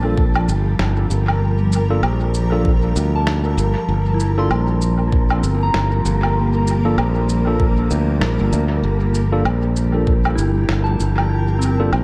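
A swung sixteenth-note groove in 4/4 drives this spacious, hazy ambient dub excerpt. A deep, layered electronic kick and a muffled, compressed mix of woodblock, cabasa and snare with dub echo sit alongside a bright, growly fingered electric bass that stays up front. Around them drift a cloudy, detuned granular pad on a sustained Gm7, soft warbling FM bell arpeggios with chorus and echo, clean tine electric piano stabs in the background, and an airy, breathy wind-like noise texture that enters at 1.6 seconds.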